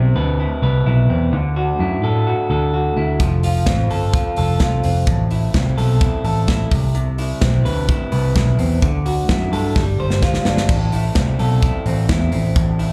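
A bright, twangy electric guitar, slightly broken-up through a small old amp, spins picked arpeggios through a digital delay, giving this jangly indie pop excerpt in A minor a lo-fi, wistful shimmer. Underneath, a picked electric bass sits up front with a round, amped tone, moving from Cmaj7 and Dadd9 through Fadd9 and Am at a straight 128 BPM in 4/4. A polished modern studio drum kit joins at 3.2 seconds, with a punchy kick, a medium-tuned snare, hi-hat and crash cymbal sounding airy and close. A drum fill at 9.8 seconds rides a G7sus4 into a brief new section on Amadd9 at 10.7 seconds, leaving a bittersweet, unresolved feeling as the passage cuts off mid-song. The whole performance comes across like a live gig heard through a venue's PA, wrapped in club reverb.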